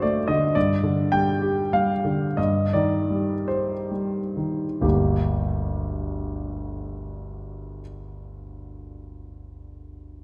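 A clear concert grand piano sits up front in this brief fragment of a romantic character piece for solo piano, carrying a bittersweet, brooding mood across its 10.2 seconds. The piano has a natural tone with deep bass and short sustain, ranging from G1 up to G5, and it is set in a generous scoring-stage reverb with a 1.9-second decay. Moving in 6/8 with free rubato, the opening phrase slows down through its first 4.8 seconds, passing from a D chord over a G bass to a high G5 and then a C minor add9 over G. At 4.8 seconds the music settles onto G minor as a new section begins and carries on to the end. Lossy compression artefacts colour the sound, and the passage is cut from a longer piece.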